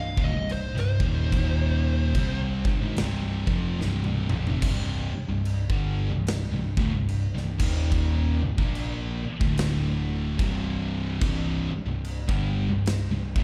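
A dark, compressed fuzz lead guitar opens this heavy, hypnotic stoner and doom metal excerpt, tracing a short melody high above a wall of riffing guitars. It falls away at 2.4 s, leaving the heaviness to the riffs and the rhythm section. Beneath it, three distorted guitars churn out the riff in the background: a warm, compressed fuzz guitar with slapback echo, a murkier fuzz guitar, and a bright, double-tracked high-gain guitar. A growly, overdriven picked bass pushes punchy low end through the mix. The big acoustic drum kit sits up front, with a punchy kick, medium-tuned snare, crashes and toms in an airy, polished stone-room sound, and a drum fill at 3.8 s leads into the next section at 4.6 s. The slow 73 BPM groove in C dorian carries a loose swing, and the whole performance sounds like a live gig heard through a club's PA, with small-room ambience and club reverb.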